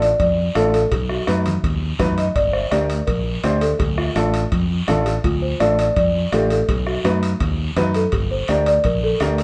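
A straight 4/4 cumbia pulse drives this fiery latin passage at 166 BPM, with raspy, band-limited guiro and ringing, compressed metal-shell timbales sounding from the start, joined at 0.2 s by a distant, soft-beater bombo and high-tuned congas played with soft hands in the background. A fingered electric bass sits up front, punchy and direct, anchoring the low end between G1 and F#2. The melody belongs to a folk marimba struck with soft mallets, its hardwood bars giving a dry, rustic, round and mellow tone in the range F4 to D#5. Beneath it, a boxy upright piano with short sustain supplies warm, woody accompaniment over a cycle of Dm, B and Gm that repeats across the 9.4-second section. The whole band is heard from further back in a wet studio room, a driving fragment cut from a longer piece.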